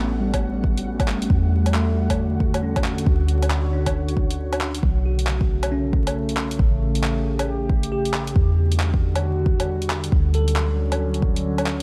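Future garage with a melancholic, rainy mood, cut from a longer piece, where a bell-like tine electric piano under a filter sweep and tape echo drifts beside a warbling, detuned tape-like pad with chorus and 12-bit sampler grit, both pumping against the sidechain alongside a soft, round 808-style bass. A grainy, flickering texture hovers in the background until 4.8 s, while a deep house kit of handclaps, hi-hat and woodblock joins at 0.3 s with a deep, up-front electronic kick that drops out briefly before 4.8 s. Vinyl crackle sits over the whole mix, and the chords cycle through A7, Em9, Dmaj7 and Bsus2.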